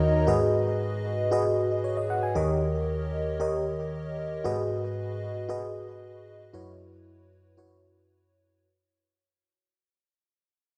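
A dark sound wrapped in moderate plate reverb surrounds this short pop fragment, cut from a longer piece and carrying a nostalgic yet urgent mood in a straight 4/4. The only part is an FM electric piano layered with a soft pad, sitting up front and playing alone across the whole clip, spanning D#2 to A#5. Its tone is lush and dreamy, with a triangle-like core, a faint noise layer, and notes that strike with a fast attack before decaying, thickened by chorus and trailed by tape echo. A brief electric piano fill opens the clip at 0.0 seconds, and from 0.3 seconds the music fades out over the rest of its 8.6 seconds. Underneath, the harmony moves from G#m7 to D#7, back to G#m7, and settles on F#7sus4.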